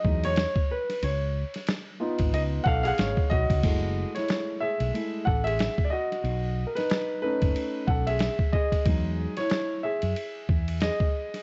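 A dark, mellow grand piano sits up front and carries the lead throughout this short cut from a longer jazz-hop piece, moving through Emaj7, C#7, F#m7 and B7 chords in F# dorian at 92 BPM with a lazy 16th-note swing. A compressed, pitched-down, muffled sampler-style kit with a thumpy kick, medium-tuned snare, hi-hat, ride and crash sits alongside it, while a woody, growly fretless electric bass with tube saturation enters at 0.1 s and drops out at 10.9 s. Light reverb and the warbling pitch drift of worn cassette tape, with the top end rolled off, give the whole thing a cool, nocturnal haze.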